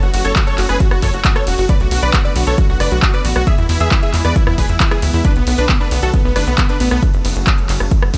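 The sound is dry overall, with an electronic kick drum standing up front and carrying its own studio reverb and a small-room character. This excerpt of uplifting trance drives along at 135 BPM in a straight 4/4, in B dorian, with a soaring, driving mood. A huge, thick supersaw with an airy noise layer, detuned unison and vibrato carries the melody from the start, pumping against the kick through sidechain and trailing a digital delay until it stops at 7.0 s. Beneath it, a lush, warbling vintage pad with chorus holds sustained chords in the background, while a tight sequencer bass with a plucky sawtooth and square-wave tone and a moving notch pushes the low end, both also pumping. The big-room drum kit layers handclaps, rim clicks, ride cymbal and metallic, overdriven hi-hats with studio reverb, joined by the kick from 0.4 s. The chords move through F#m, Bm7, E and Bm7 before returning to F#m.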